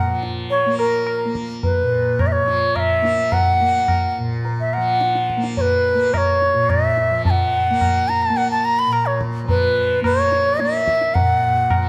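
A bright, reedy bansuri sits close and up front in a moderate concert-hall reverb, its airy bamboo tone carrying the melody over a softly plucked, buzzing tanpura drone. This Hindustani classical excerpt, in raga Todi on Bb, moves at 107 BPM in a straight 7/4 and carries a solemn, introspective mood. The bansuri plays with a straight, tongued tone, ranging from Bb4 up to Cb6, while the shimmering tanpura holds the drone between Bb2 and Bb3 beneath it. High-tuned, ringing tabla enter at 0.2 seconds, sounding close and acoustic as they supply the percussion. The bansuri leads clearly, with the tanpura and tabla set lower in the balance, and the passage is cut from a longer performance.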